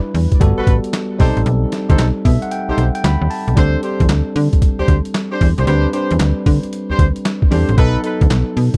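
A swung sixteenth-note groove at 114 BPM in 4/4 drives this confident, bouncy new jack swing cut, taken from a longer R&B piece. The boom bap sampler-style kit sits up front, compressed, pitched down and gritty, with a thumpy kick, a medium-tuned snare, handclaps and hi-hat, all re-recorded in a large room. Beside it, a slap-like FM bass adds snappy, metallic, digital attacks that decay, while a bell-like tine electric piano supplies clean, direct accompaniment over chords such as Gmaj9 and B7b9b13. The electric piano breaks into a fill at 2.0 seconds, the kick drops out at 2.5 seconds, and a new section arrives at 3.6 seconds on D7sus4. From 0.6 seconds, a clear jazz-style horn section punctuates with soft-attack ensemble stabs touched by light vibrato, all captured in a dry, close 1970s-style studio sound.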